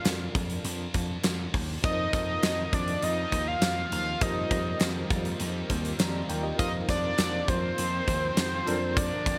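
Nostalgic and romantic, this 1980s-style pop excerpt moves at a straight 101 BPM in 4/4, with a fat, up-front analog lead carrying the melody through chorus and delay over a punchy, big-room rock kit with tambourine, an amped vintage slap bass and a very quiet, crisp group handclap. Behind them sit a worn, slightly out-of-tune tine electric piano with medium tremolo through a combo amp and a bright, double-tracked high-gain guitar, while a sweeping, resonant sawtooth pad with ring modulation enters at 1.8 seconds, very quiet, holding chords that drift between Bbmaj7/F, F7sus4 and Eb69/F. A moderate plate reverb and bright 1980s-style digital production give the whole excerpt its period sheen.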